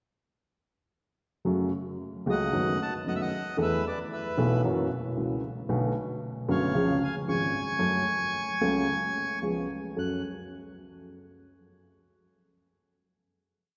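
A milonga rhythm in 4/4 drives this short, complete tango, though the pulse is played with a free, rubato feel that heightens its dramatic, melancholic mood. A dark upright piano carries the accompaniment from 1.4 seconds, its mellow, woody tone and long sustain sitting up front and reaching deep into the bass. The bandoneon enters at 2.3 seconds with a reedy, bright, airy melody built from motifs in sentence-like phrases, partly doubled in thirds and also placed up front. The harmony moves through a brooding minor progression with suspended and dominant colours before settling back home. The final chord arrives at 10.0 seconds, both parts stop at 10.2 seconds, and the chord rings on in a wet church reverb with a long, hall-like tail.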